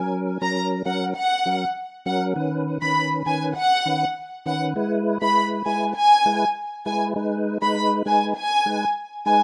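A straight 4/4 dancehall pulse at 100 BPM drives this sultry, tough piece, cut from a longer work. A tonewheel organ carries the accompaniment from the very start, its clean, clear tone sitting up front with audible key click, chorus vibrato and a slow rotary speaker. At 0.4 seconds a symphonic violin section enters with the melody, bowed and lush with a soft attack, a smooth top and expressive vibrato, its lines trailed by delay and placed up front alongside the organ. The harmony moves from F# to Badd9, then shifts at 4.8 seconds into a second section built on E and G#m. A moderate studio reverb and a rough home-demo mix give the recording an intimate, unpolished feel.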